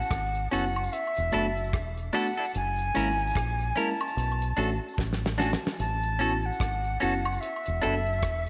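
A 74 BPM lovers rock groove in 4/4 swings its sixteenths, with a damped 70s drum kit giving a fat snare and tight kick under a deep, round dub bass that sits up front, and a drum fill arriving at 5.0 s. A breathy jazz flute with chiff and vibrato carries the sweet, romantic melody through tape echo, while a worn, slightly out-of-tune tine electric piano, lightly overdriven and phased, accompanies over A6, E7sus4, F#7 and Bm7 chords, and a twangy clean electric guitar adds compressed stabs. Tambourine and woodblock sit in the background with their own tape echo, and this short excerpt from a longer piece is bathed in a moderate echo chamber reverb.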